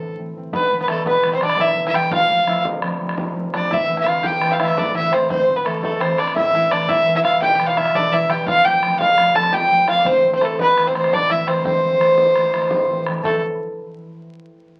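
A rich, earthy fiddle carries the melody from the very start, bowed by a single player and placed up front, while a concert harp rings beneath it with thumb-plucked accompaniment. This is a wild, spirited Celtic slip jig in A minor at 113 BPM in 9/8, cut from a longer piece, with the chords moving among Am, Em and F. At 0.5 seconds the rest of the group joins. A twangy bluegrass banjo, played with fingerpicks, sits in the background as a percussive second line. A very quiet, reedy accordion adds a mellow, boxy second voice, and a damped, tight bodhran supplies distant percussion. A moderate club reverb surrounds the ensemble, and the recording carries the vinyl crackle of a very old 78 rpm record.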